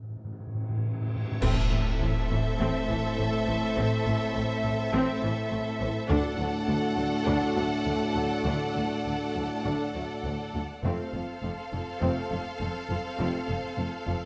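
A moderate scoring-stage reverb gives this dark, dramatic cinematic orchestral cue, cut from a longer piece at 102 BPM, a sense of space, as an up-front timpani fill on A2 opens alone before the full orchestra arrives at 1.4 seconds with a bright crash of clash cymbals and concert bass drum and a huge, dark, very quiet impact. Over Am, D and F chords, distant violins carry an intense, vibrato-rich melody between E5 and F#5 while a smooth second violin line holds A4, woody violas and a focused string section fill the middle, and a mellow French horn section and punchy trombones sustain chords in the background. Rich double basses and expressive cellos with a soft attack anchor the low end until the strings end at 14.3 seconds.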